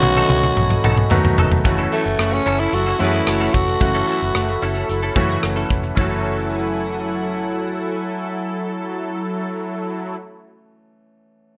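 1980s-style pop with a nostalgic, moody air, where a growling, raspy tenor saxophone carries the melody through digital delay over clear concert grand piano, a shimmering pulse-width pad, a twangy clean electric guitar riff in the background, round foam-muted fingered bass, a punchy modern drum kit opening on a fill, crisp group handclaps that drop out at 1.2 seconds, and fat, brassy analog synth stabs entering at 1.7 seconds, all set in a bright digital production with plate reverb.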